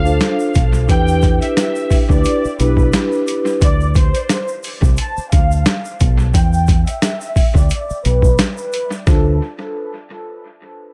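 Moody, dark boom-bap hip hop at 88 BPM with a swung 16th feel, where a gritty, pitched-down sampler-style kit with a thumpy kick and a round, deep dub fingered bass sit up front under a lush, bowed violin section melody, mellow soft-mallet vibraphone with cassette-tape colour playing from 0.0 to 3.6 seconds and returning briefly at 9.1 seconds, a grainy egg shaker in the background, dub echo on the violins, vibraphone and drums within the echo-heavy mix, a filter sweep running until 9.1 seconds, and chords moving from Dm7 through Em7, Bm and E5 back to Dm7 in this short cut from a longer piece.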